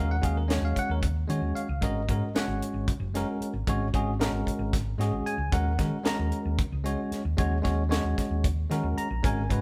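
A bell-like tine electric piano and a dark, round hollow-body electric bass open this intense, driving electric jazz fusion excerpt in Eb minor, joined at 0.2 seconds by a tight, dry funk drum kit with a high-tuned snare, hi-hat and tight kick. Set in an odd 7/8 metre at 227 BPM in eighths with a straight feel, the band moves from Ebm7 to Absus2 at 1.8 seconds and back to Ebm7 at 5.5 seconds, the bright, clean piano and the drums sitting up front. The group plays live together in one room, with a moderate large-studio reverb giving the sound a sense of space.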